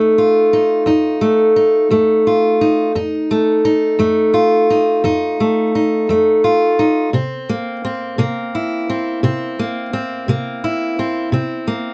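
Vinyl crackle sits over a short, wet booth ambience in this brief cut from a longer blues piece, which moves in 12/8 at 57 BPM with a swaggering, rollicking mood. A fingerpicked steel-string acoustic guitar plays solo and up front for the full 11.9 seconds, its warm, concert-style tone ranging from F2 to F4. The harmony rests on F7 before shifting to C7 at 7.1 seconds.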